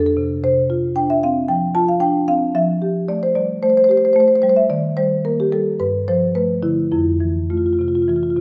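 Flowing and warm, this short passage from a contemporary classical piece features a solo marimba played with soft mallets, moving through a rubato 4/4 for 8.4 seconds. The padauk bars give a woody, round and mellow tone that sits up front, spanning F2 to A5 within a moderate concert hall reverb. The harmony drifts from Csus24 through Fmaj9, Eb and Gsus2 before settling on Fmaj7.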